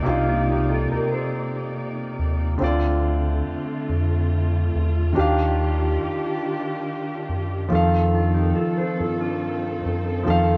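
A clear concert grand piano and a dark, lush studio string section open this tender, intimate R&B excerpt together, with a rubbery, hollow square bass sitting up front from 0.1 seconds, all at a slow 47 BPM in a straight 6/8 over the chords Cm9, Dm7, Ebmaj9 and F7. The piano is close and natural, its action noise audible and its bass deep, while the strings carry bowed, woody sustained chords with vibrato and a smooth top. A mellow, clean, fingered electric guitar adds a second line at 0.1 seconds and returns at 8.1 seconds, the band sounding live in one room with a soft top end and wet studio reverb.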